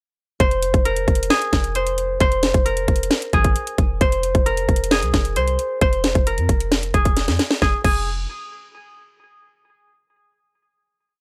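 A dry, gritty hardware recording with little reverb frames this melancholic, brooding half-time trap beat, built as a whole piece over Fm moving to Bb5/F at 4.0 seconds. A fingerpicked concert harp carries a ringing, looping melody treated with tape echo and repeated like a sampled loop. Beneath it, a deep, boomy 808-style bass holds long sub-bass notes with pitch slides that follow the kick, while an up-front electronic trap kit bounces with a hard-clipped kick, sharp snare, metallic sixteenth-note hats with fast rolls and a crash, closing with a drum fill at 7.2 seconds before the final chord.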